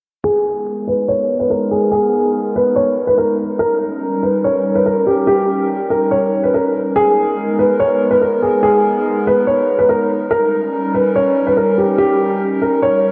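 Cold and ominous, this half-time hip hop excerpt drifts through a dreamy haze, soaked in a lush hall reverb. A dark concert grand piano carries the melody from 0.2 seconds, up front and intimate, its mellow, boxy tone edged with audible action noise and shaded by a low-pass filter and delay. Moments later at 0.6 seconds, a hollow, flute-like pad sustains the chords with a slow attack and long release, its detuned tone thickened by chorus. The harmony rocks between G#madd9 and D#7 across two sections, with a filter sweep running through the first before the second begins at 7.0 seconds. Both parts hold until the cut at 13.1 seconds.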